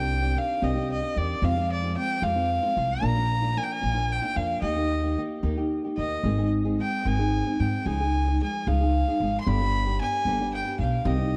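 Festive yet romantic, this short mariachi passage in a straight 6/8 feel sits in Mexican folk territory and is cut from a longer piece. A single bowed violin carries the melody up front, its tone biting and slightly nasal with an airy bow, light vibrato and an earthy, boxy character, trailed by a touch of tape echo. Beneath it, a fingerpicked flamenco guitar with fresh-sounding strings supplies the accompaniment, while an upright bass played pizzicato adds a woody low end that also sits close to the listener. All three parts play together from start to finish across the 11.4 seconds. The harmony moves from Cmadd9 through Fm, Bb, Eb and Ab to Dbadd9 before landing on G at 9.5 seconds. Light reverb and a dark, warm production give the trio a slightly shaded sound.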